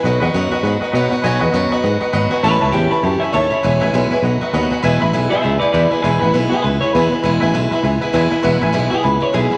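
Upbeat and rollicking, this short rockabilly excerpt, cut from a longer piece, swings along at 200 BPM in E major. An electric guitar through a small old amp carries the melody with a twangy, slightly broken-up tone, then moves into a clean solo from 4.8 seconds to the end. Beneath it, a picked swing-style acoustic guitar sounds boxy and up front, with audible finger squeak, while a detuned, jangly honky-tonk upright piano adds vintage color and drops in short fills around 2.0 and 4.2 seconds. A sustaining fretless electric bass anchors the low end with a growly, punchy, amped tone. The chords move from B through A and E, back to B, and then to E as the solo begins, and a generous large-studio reverb gives the whole performance a roomy, spacious sound.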